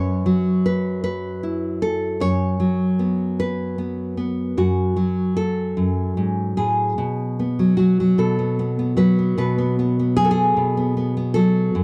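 A lone nylon-string guitar, fingerpicked up front with a deep classical tone and audible finger squeak, carries this wistful, haunting folk fragment in a slow, rubato 6/8 at 51 BPM, moving from F#5 through F#sus4 and F#m before shifting to B5 at 7.0 seconds, all captured in a dry, close 1970s-style studio sound.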